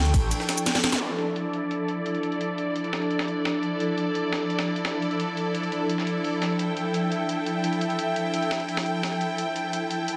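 An overdriven, up-front electronic drum kit with a cracking snare and bright hats drives this aggressive, dark technical drum and bass excerpt at 172 BPM in D harmonic minor, layered with a gritty, compressed breakbeat sampler kit and its high-tuned snare, while a close, intimate bowed string section holds sustained sul tasto chords with light vibrato and sidechain pumping, a warbling, detuned lo-fi pad adds nostalgic chorus-soaked texture, and a brief electronic zap lands on a band accent at 0.9 s during the opening drop and drum fill, set in a lush hall ambience within a dense, heavily limited master.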